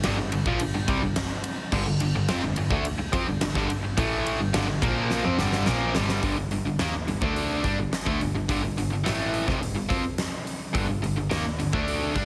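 Driving and aggressive, this hard rock excerpt in G minor moves at 106 BPM in a straight 4/4, with two bright, picked overdriven guitars riffing throughout, one set back in the background, and a third, warm, double-tracked and very quiet, playing only until 6.2 seconds as the harmony shifts from Gm to G5. A dark, veiled double bass, bowed and muted by one player with vibrato and a soft attack, carries the low end, while a huge, up-front arena drum kit with a fat snare, punchy kick, bright crash, hi-hat and ride cymbals drives the beat and plays a fill from 5.1 to 6.2 seconds. Light reverb sits over a heavily compressed, radio-style sound.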